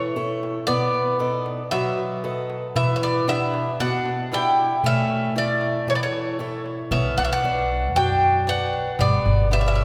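Two picked, double-strung bouzoukis open this relaxed, hopeful fragment of Greek folk: the front one carries a metallic, up-front melody high in its range while a mellower partner plays a lower second line, and a bright, boxy swing-style acoustic guitar with audible finger squeak picks alongside. A crisp metal-shelled darbuka joins at 0.2 seconds over a straight four-beat feel, and a woody, growly pizzicato upright bass with steel strings thumps in up front at 6.9 seconds as the chords move from A through B7 and Em7 to G. The whole band sits in the long, wet reverb of a church or concert hall.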